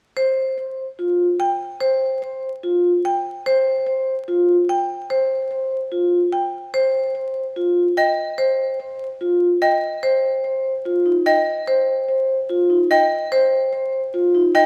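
Propulsive and bright, this minimalist classical pattern piece moves at 146 BPM in a straight 4/4, tuned slightly sharp to A4 = 444 Hz, and it is cut from a longer piece. A marimba played with medium hard mallets carries the melody between C5 and G5 from 0.2 seconds, its tone close-miked, dry and full. Soft-malleted vibraphone with the motor off supplies arpeggios from Eb4 to C5, metallic and ringing yet mellow, sitting mid-forward alongside the marimba. At 8.0 seconds a xylophone with wooden mallets joins with arpeggios on Eb5, woody and percussive with a boxy small-room character. The harmony moves from F5 to an Ebsus2 chord at 10.0 seconds. A moderate scoring stage reverb surrounds the ensemble, and a layer of vinyl crackle adds texture beneath the mallets.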